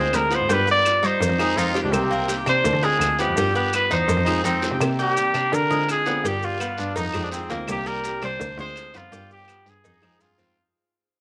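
Cuban son with a guajira lilt in C minor, this nostalgic, danceable excerpt moves at 167 BPM over a cycling Cm7, Dm7b5, G7, Fm7 progression, with a clear, punchy trumpet carrying the melody up front while a gritty, growling second trumpet enters at 1.4 seconds. Beneath them, a metallic Cuban tres picks arpeggios on its double strings, a small, fingerpicked nylon-string guitar accompanies in the background, and a biting, nasal bowed cello supplies the bass with light vibrato. Woody claves, a tight, high-tuned cowbell, a raspy guiro and grainy maracas keep the percussion soft in a small room with light reverb, and the excerpt fades out from 4.8 seconds.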